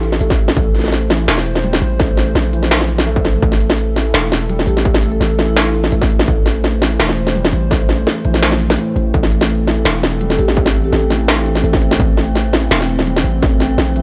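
A half-time drum and bass groove, heavy and tense, sets an up-front industrial kit of clanging snare and smooth hats over a distorted electronic kick and a deep, long 808-style sine bass, while a moody, detuned analog pad pumps with sidechain and chorus alongside a felt-muted upright piano playing intimate arpeggios through tape echo, a round soft-mallet marimba adds brief melody lines with 12-bit sampler grain and analog delay at 4.7 and 10.4 seconds, and an eerie metallic FM drone enters at 9.6 seconds, captured in a dry, gritty hardware recording cut from a longer piece.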